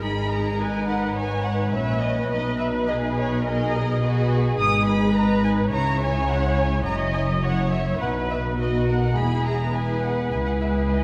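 A muted string orchestra opens at once in a quick, urgent classical-period movement with restless rubato, the con sordino violins carrying a dark, veiled melody while a second, close violin line and rich violas fill in the accompaniment. Beneath them, cellos with light vibrato and a smooth top join an up-front, lush double bass section to anchor the bass as the harmony moves from G#m through C#m, F#5, B and E. The whole ensemble sits in a reverberant concert hall, and the 11-second passage is cut from a longer piece.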